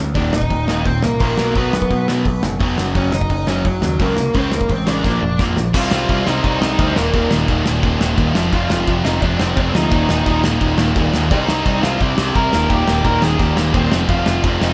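A straight 4/4 punk rock pulse drives this upbeat, rebellious cut at 172 BPM, taken from a longer piece and played by a band live in one room with light reverb. The loose indie drum kit sits up front with a punchy kick, a medium-tuned snare, dark cymbals and a pumping room sound, working crash, hi-hat, kick and snare, and a drum fill at 5.0 to 5.7 seconds leads into the second part. Underneath, a growling picked electric bass, direct and amped with overdrive, holds the low end, while a crunchy overdriven guitar and an overdriven semi-hollow guitar play riffs in the background from the opening. A smooth, dark overdriven lead guitar carries the melody with digital delay, reaching up to Bb5 over chords that begin on Eb5, B5, Gb and Db5. At 5.7 seconds a bright, scooped high-gain guitar, double-tracked and distorted, joins the riffing further back as the harmony turns to Cm, Eb5 and F5.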